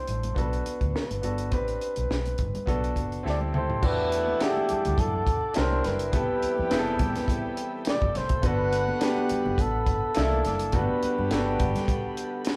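Lush 1970s-style soul at 104 BPM in G major, smooth and romantic, where a breathy flugelhorn with scooped notes and light vibrato carries the melody over clear grand piano, a round, foam-muted fingered electric bass, a compact cocktail drum kit with dark cymbals, a high-tuned snare and a punchy kick, and soft, ringing congas in the background, until a drum fill at 3.2 seconds leads at 3.8 seconds into a passage where a flute-like tonewheel organ with slow rotary speaker and tight, octave-doubled horn stabs join, all played live in one room with moderate reverb.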